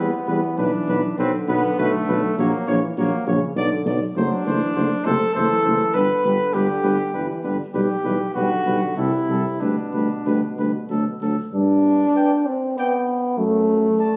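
Captured on a phone in a recital hall with moderate reverb and compression, this triumphant, stately classical brass quintet excerpt moves in a rubato 3/4 at 99 BPM and settles into G major from 4.2 s, with a mellow trumpet singing the melody with light vibrato over a smooth-topped flugelhorn second line up front, a very quiet dark French horn and a warm euphonium with light vibrato in the accompaniment, and a prominent bass trombone anchoring the low end with light vibrato.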